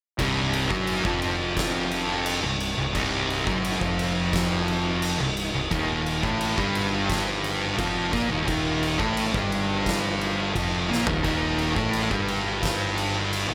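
A straight 4/4 pulse at 87 BPM drives this brooding, ominous stretch of stoner and doom metal in C dorian, cut from a longer piece. An oversized, low-tuned acoustic kit sits up front with a punchy kick, a fat snare, dark cymbals and toms, its saturated, gritty sound carrying a bright, pumping stone-room character, and a drum fill lands at 10.9 seconds. Two thick fuzz guitars play the picked riff: one warm and up front, the other darker and set in the background. Beneath them, a fingered electric bass growls with overdriven fuzz, while a very quiet tonewheel organ holds full, lightly overdriven sustained chords through a slow rotary speaker with chorus vibrato. The harmony moves from C minor to an Eb power chord at 5.7 seconds, and the overall sound is dry, with little reverb.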